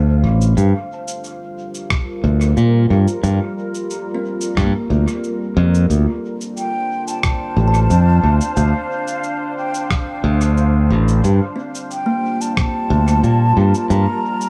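A deep, warbling ambient pad holds Dm7 and Gm9 chords beside a woody kalimba arpeggio roughened by 12-bit sampler grit and tape echo, while a bright, growly fingered electric bass sits up front in this spacious ambient dub fragment at 90 BPM. A muffled, pitched-down shaker and rim click trail dub echo from 0.4 seconds, and a thumpy, compressed electronic kick joins at 1.9 seconds. From 6.6 seconds an airy concert flute with gentle vibrato carries a mellow melody through its own dub echo, set in an echo-heavy mix with light digital ambience.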